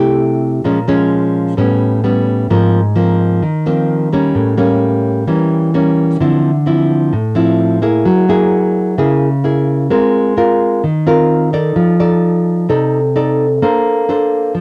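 A straight 4/4 pulse at 130 BPM carries this sunny, breezy bossa nova fragment, cut from a longer piece and lasting 14.6 seconds. A lone nylon-string guitar, up front and dark in tone, is fingerpicked in a classical manner across a rich chord sequence that opens on a rootless Fmaj9 and moves through colors like A7b9, Dm9 and Gb9 before settling on Bbmaj9. Finger squeaks, the cassette-tape character of a home recording and a modest booth ambience give it an intimate, homespun feel.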